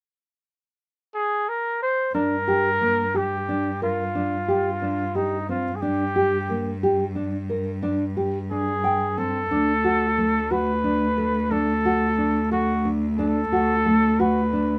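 Pensive and restless, this contemporary chamber piece moves in an uneven 11/8 at 179 BPM counted in eighths, cut from a longer work. A clear, vintage-toned flugelhorn carries the jazz-style melody with vibrato from 1.1 seconds. From 2.1 seconds a dark, full-bodied nylon-string guitar joins with thumb-plucked arpeggios, and a smooth, close bowed cello holds the bass with vibrato, all set in light reverb as the harmony moves from a G5 chord to D at 9.5 seconds.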